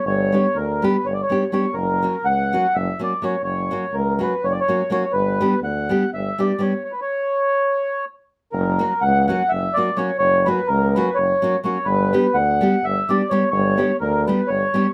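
Balkan folk in the manner of a wedding band, this restless, fiery excerpt runs at a brisk 248 BPM in 7/8 with a straight feel, set in F# phrygian dominant and moving between G and F# chords. A mellow, reedy accordion carries the melody with slow beating and a dark, smooth tone, while a fingerpicked nylon-string guitar accompanies with full-bodied, fresh-string warmth and audible finger squeak, and a clear tuba with light vibrato holds the bass from a roomy distance. The band halts for a stop from 6.8 to 8.5 seconds before the phrase returns, all within a small room ambience.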